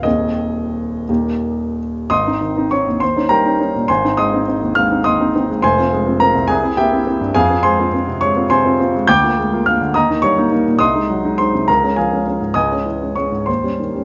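This romantic-era character piece for solo piano unfolds in Ab major in 6/8, its pulse moving freely with rubato at roughly 57-71 BPM counted in dotted quarters. The mood is passionate and warm, carried entirely by a grand piano that sounds intimate, natural and up front, with the soft clatter of its action audible beneath the notes. The keyboard spans from a deep Eb1 up to G6, while light reverb lends a touch of space and the top end stays gently rounded. A brief opening phrase settles on Ab and Eb before a new section begins at 2.1 s, turning toward F minor around 5.6 s with its C7 dominant following shortly after. From there the harmony travels through Bb7 and Eb to Ab7 and Db, then darkens to Db minor and closes on an Eb7 at 13.5 s, the passage ending as a fragment of a longer work.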